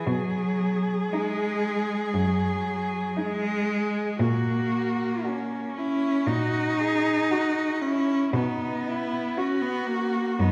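Tender and warm, this lyrical classical passage for a cello ensemble is cut from a longer piece and unfolds in 4/4 with a free, rubato feel. The melody, on a bowed cello placed up front, enters at 1.1 seconds, singing expressively with vibrato and portamento, though its tone has a distant quality. Beneath it, a second cello carries a background line in the same register, bowed with similar vibrato and gliding portamento. A rich-toned cello supplies smooth, even accompaniment up front, while another cello anchors the bass with soft attacks, vibrato and expressive slides. The harmony rests on B, moves to F#/A# at 4.2 seconds and settles on B5 at 8.3 seconds, all bathed in the lingering bloom of a wet concert hall reverb.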